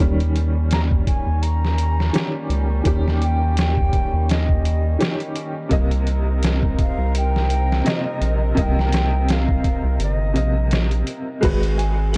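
A swung 84 BPM trip hop groove in 4/4 from a gritty, pitched-down sampler-style drum kit with a thumpy kick and a round, deep analog bass up front carries this dark, smoky piece over D#7 and Cm7 chords, as a worn, slightly detuned upright piano with tremolo and veiled, muted strings sit beneath an airy, mellow flute melody with tape echo from 0.7 seconds, before a delicate, tinkling music box enters at 11.4 seconds in a dry, dark and warm production.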